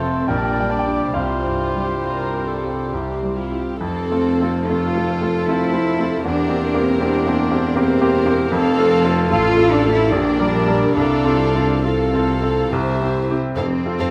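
This excerpt from a longer classical piece opens with a clear, polished baby grand piano carrying the melody up front, in F major and 3/4 at roughly 65-80 BPM, played with rubato and a lyrical, passionate mood. Beneath it, chamber strings played sul tasto with soft attacks form an intimate cushion in the background: two violin sections, one doubling the melody with light vibrato and one tracing a second line, plus a dark viola section in the accompaniment. A smooth, floating cello section and a pure double bass section anchor the bass throughout. During the opening moments, a cor anglais and a very quiet, mellow clarinet add second lines while a present bassoon supports the accompaniment, all three dropping out by about 3.5 seconds. At 3.8 seconds a very quiet tuba with a vintage tone joins the bass as the harmony settles on F and moves through C7/E, Gm/Bb and F/C before resolving to F at 13.6 seconds. 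A moderate scoring-stage reverb gives the ensemble a gentle sense of space.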